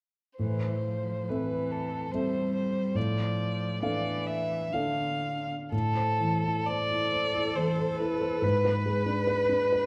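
Melancholic and elegiac, this short passage cut from a longer piece is a slow romantic movement for piano trio in A minor, moving in a rubato 3/4 at roughly 59-73 BPM. A rich, smooth violin with vibrato carries the melody up front, its tone even with a smooth top, while a single bowed cello with a woody, close sound and its own vibrato sings a second line beneath it. A grand piano supplies the accompaniment, intimate and natural in tone, its action noise audible up front. All three play together from 0.4 s to the cut at 9.9 s, the harmony shifting from A minor to D minor over A, back to A minor as a new section opens at 5.7 s, then moving to a G-sharp diminished chord. A moderate recital hall reverb and a dark production give the trio a close, shadowed glow.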